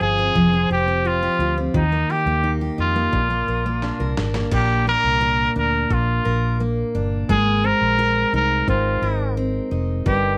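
A straight 4/4 pulse at 86 BPM carries this reflective, tender acoustic pop fragment, with a gritty, compressed sampler-style drum kit entering at 0.4 s on thumpy kick, snare and crash, and a drum fill from 3.8 to 4.5 s leading into the second section. A dark, round, foam-muted fingered electric bass sits under an up-front, full-bodied picked steel-string acoustic guitar with audible finger squeak, moving through Fmadd9, Eb, Bb and Abadd9. Over them a bright, vintage-toned solo trumpet sings the melody with vibrato in light reverb.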